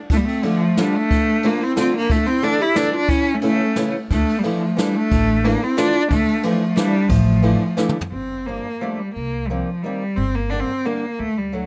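A rich, focused bowed cello with vibrato carries the melody of this nostalgic, bittersweet musette waltz from the opening, shadowed by a dark, smooth-topped classical clarinet and natural-sounding brushed jazz drums with a punchy kick, while a boxy fingerpicked ladder-braced acoustic guitar joins almost at once, a woody, thumpy pizzicato upright bass enters at 4.1 seconds, and after a short drum fill the clarinet and drums fall away around the eight-second mark as the swung, rubato tune moves into a new section, all captured in a dry, intimate close-miked sound.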